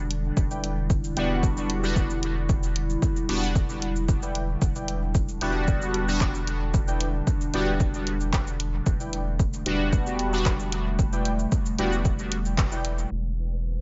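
A straight 4/4 groove at 113 BPM drives this deep, nocturnal dub techno excerpt in E minor. It is built on a punchy, overdriven electronic kick and a layered deep house kit of cabasa, handclaps and hi-hat, with the percussion, hats and snare dulled by low-pass filtering and roughened with overdrive. Beneath it, a round sine sub bass holds E1 with sidechain pumping, while a warbling, tape-like pad sustains an Em7 chord with a slow attack, chorus and its own reverb. From 0.5 s a lo-fi, nostalgic keys riff with detuned pulse and sawtooth tones decays into dub echo, and at 1.2 s a juicy, resonant polysynth adds chorused, phased stabs with filter sweeps and ring modulation, also trailing dub echo. A band accent lands at 12.6 s, and in the closing moments a faint, grainy, flickering granular texture surfaces in the background, all set in light digital ambience with the top end rolled off by a low-pass filter.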